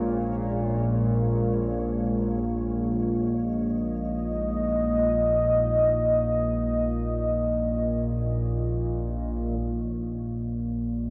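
In free time, this ominous dark ambient drone pairs a deep, detuned sawtooth pad holding a Db/Bb chord up front with a resonant, evolving analog drone spanning Bb1 to Bb2, both carrying chorus, while a grainy, flickering granular texture on Db5 fades out in the background until the pad and texture stop at 9.6 seconds, leaving the drone alone until 11.1 seconds in a dreamy mix soaked in lush hall reverb.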